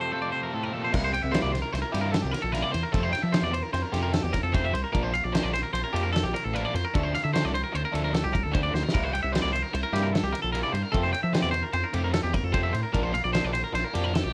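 A bright, clean twangy electric guitar spins picked arpeggios high over this bright, playful stretch of math rock and midwest emo in 5/4, cut from a longer piece. Beneath it, a double-tracked overdriven guitar bites through a picked riff. A second twangy guitar, compressed and up front, offers clean accompaniment only until 2.9 seconds. At 0.9 seconds a growling fingered bass pushes forward, overdriven with transformer grit, alongside a loose, distant indie kit heard in a roomy studio, with dark cymbals, a fat snare and a punchy kick, plus a drum fill at 8.7 seconds. The harmony moves through C7, Fmaj9, Bbmaj9 and Dm7 before settling on Bbadd9. The whole recording carries little reverb and the worn, warbling pitch drift of old cassette tape.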